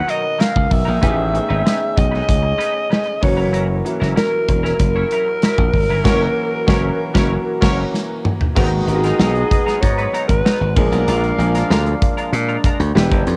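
A raspy, gritty alto saxophone with vibrato carries the melody through a cassette-tape haze until 12.0 seconds, fronting a slick, nocturnal stretch of polished 1980s jazz-funk pop at 96 BPM. Punchy slap bass and an up-front studio drum kit with bright cymbals drive the groove beneath a boxy grand piano with subtle chorus, a clean hollow-body electric guitar riff through analog chorus, and mellow classical-style brass chords in the background. At 6.0 seconds a distant, roomy horn section adds a tight second line as the band hits an accent and the drums fill into a new section at 8.6 seconds, the whole piece framed by a small-room, home-cassette sound.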